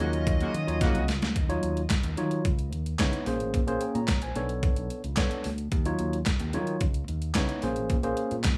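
A detuned 8-bit digital drum machine leads this slick, funky early-eighties boogie funk excerpt, its overdriven, sampler-style kit of thumpy kick, medium-tuned snare, hi-hat and handclaps sitting up front with gated reverb. The groove moves at 110 BPM in a straight 4/4. It opens with a band accent and a drum fill before the main section settles in at 1.4 seconds. In that opening flash, a dark, picked, overdriven lead guitar states a brief melody through tape echo, while a fat, brassy analog synth brass adds a filter-swept second line with chorus and a very quiet, shimmering pulse-width pad holds soft chorused chords. Throughout, the clean tine electric piano carries the accompaniment, up front and present, alongside a direct fingered electric bass that runs the full 8.6 seconds over a cycle of minor ninth chords starting on Ebm9. The sound is dry, with only a small room ambience around the parts.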